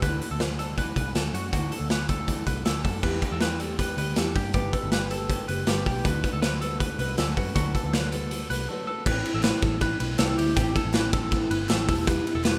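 A jangly indie pop fragment opens with everything in motion: a woody steel-string acoustic guitar with old strings picks out the accompaniment, while a bright, twangy twelve-string electric guitar spins clean arpeggios above it. Underneath, a dark, round, foam-muted electric bass holds the low end, and a raw garage drum kit sits up front, its punchy kick, medium-tuned snare, hi-hat, ride and crash sounding saturated and gritty in a pumping stone room. The mood is nostalgic and breezy, carried by a straight four-beat groove and easy chord changes that move from Dadd9 through Em7, G and D6 before turning to Am and closing on Em. A crisp group handclap slips in at 9.4 seconds, barely audible beneath the band. The whole thing has the rough, dry feel of a home demo, with the drums the loudest element in the mix.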